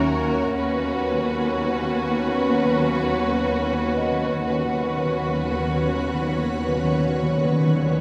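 Cinematic suspense film score at 60 BPM in 4/4, ominous and uneasy, this fragment of a longer piece sets veiled, con sordino violin sections on the melody and a second line over muted violas, while cello and double bass sections hold a dark bass on Eb2. A mellow, very quiet French horn section sustains chords alongside an ethereal, airy pad that sits in the background, bright with ensemble chorus, phaser and its own reverb, and a delicate, bell-like celesta adds texture. Timpani with calf heads enter at 0.6 s for a fill as the harmony moves from Ebm7 to Gbsus4/Eb, all set in a wet scoring-stage reverb.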